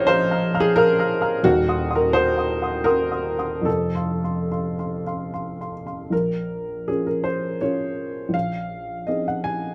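Brooding and bittersweet, this brief fragment of a romantic character piece unfolds for solo piano in triple metre, shaped with free, breathing rubato. An upright piano carries everything alone, its woody, intimate tone placed up front, with the clatter of its action audible beneath the notes. The playing ranges from deep bass up into the high treble, opening on a single high note before moving through shadowed harmonies. At 6.1 s the music turns to a second passage that settles into a darker minor colour and continues until the cut at 9.7 s. Close, detailed microphones and a dry, natural room keep the sound immediate and personal.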